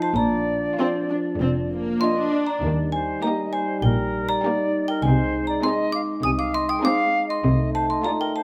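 A moderate recital hall reverb gives this short cinematic cue in Eb major a sense of space, with a playful, quirky mood at 99 BPM in a straight 4/4. Up front, a woody, dry xylophone played with plastic mallets carries the melody beside a French horn section holding sustained chords in a warm, classical style. A distant silver concert flute, pure with a crisp attack and expressive vibrato, traces a second line from the opening. Clear, focused cello and double bass sections enter at 0.2 seconds to form the bowed bass. At 0.8 seconds the upper strings fill out the texture: a lush violin section on the melody in the background, a very quiet, rich second violin line, and a close, smooth viola section in accompaniment. The harmony moves from Bb through Eb and Ab/C to F7/C before the piece is cut off at 8.4 seconds.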